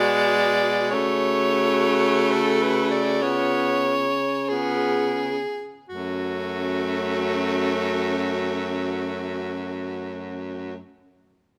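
All four saxophones sound together from the start in this elegiac, melancholic excerpt of a classical F# minor piece for single-reed quartet, where a bright, softly attacked soprano sings the vibrato melody up front over a mellow alto second line set back in the mix, a bright tenor accompaniment and a punchy, distant baritone bass, all moving in a rubato 4/4 at 41-56 BPM that slows through the first 5.9 seconds, when the harmony settles on F# minor, with close, detailed microphones capturing a recital hall's moderate 1.6-second reverb.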